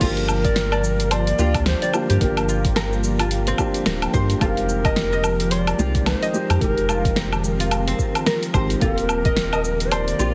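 Organic downtempo with an earthy, mystical mood, this short passage cut from a longer piece moves in 4/4 with a swung sixteenth-note feel over chords of Gm7, Fm7 and Eb6. A breathy low wooden flute in the Native American style carries the melody with expressive vibrato and a soft attack, trailed by digital delay. Around it, a plectrum-plucked fretless oud with doubled strings spins woody arpeggios through tape echo, while a felt-muted upright piano adds boxy, intimate accompaniment, its action noise audible, its sound pumping with sidechain compression and trailed by tape echo. An ethereal pad of detuned sawtooth and triangle voices holds sustained chords in the background, coloured by ensemble chorus, phaser and its own reverb, and from 0.9 seconds a very quiet, wind-like tuned noise texture drifts in alongside it. Underneath, a round sine sub bass and a deep electronic kick anchor the groove, joined by a tape-warm deep house kit with a fat snare, hi-hat, cabasa, woodblock and crash; the kick drops out at 9.3 seconds. 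The sound is heavily compressed like a radio broadcast, with only light reverb.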